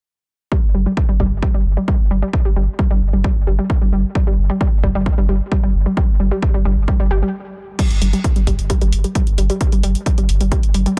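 Driving peak-time techno with a dark, hypnotic mood, this excerpt opens on a heavy, up-front electronic kick drum, a deep, round sine sub bass with tube saturation and a low-pass filter, and a bright, detuned sawtooth analog pluck riff treated with chorus, overdrive and tape echo, both bass and pluck pumping under sidechain. A filter sweep runs across the synth arpeggio until a stop from 7.3 to 7.8 seconds, after which a techno drum kit enters low in the mix with pumping hi-hats and crash cymbal. The sound is dry, with the kick and kit carrying a tape-warm, small-room character.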